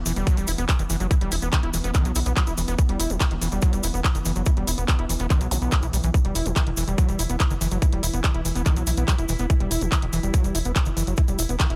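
Driven by a straight 4/4 pulse at 143 BPM, this psychedelic trance excerpt in E harmonic minor feels psychedelic and alien across its roughly 11.8 seconds. A tape-tinged garage kit of handclaps and hi-hat and a grainy, bright cabasa sitting back in a small room start at 0.1 seconds, and an up-front, tight electronic kick drum joins them at 0.3 seconds to anchor the groove. Underneath, a punchy, driving sequencer bass with a plucked, wave-folded sawtooth edge holds the low end between E1 and B1. Above it, an overdriven acid bass riff squelches with gritty, resonant distortion, sidechain pumping and digital delay, its filter sweeping throughout. A morphing, detuned wavetable pad warbles in the background with chorus, its own reverb and sidechain pumping, while a very quiet zap flickers briefly at 5.5 seconds in an otherwise dry mix.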